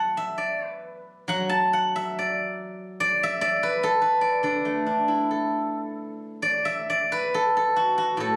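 A steel-string zither opens alone, its silvery, ringing tone placed up front as it plays fingerpicked phrases in a flowing, pastoral Chinese traditional style. The solo moves freely in rubato around 65-74 BPM in 2/4, set in the D gong mode and spanning A2 to A5. A phone recording in the room lends the sound a light, club-like reverb. The opening passage runs to 6.4 seconds, and a new section follows until the cut at 8.4 seconds, ending this short fragment of a longer piece.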